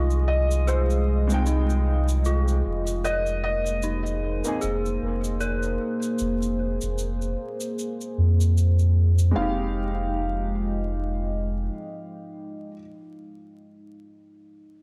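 Trip hop with a smoky, cinematic mood, this short cut from a longer piece opens on a deep, moody ambient pad carrying sustained chords with chorus and vintage sampler grit, while an eerie, inharmonic synth bell plays warbling arpeggios through tape echo and a round, soft dub sub bass sits up front. A small-room tube shaker adds light percussion, and a felt-muted upright piano sings a soft, intimate melody from 0.3 seconds, returning at 9.4 seconds, above a woody, slightly detuned second piano whose tremolo accompaniment enters at 1.3 seconds with audible action noise. The dark production has vinyl crackle and a light studio reverb.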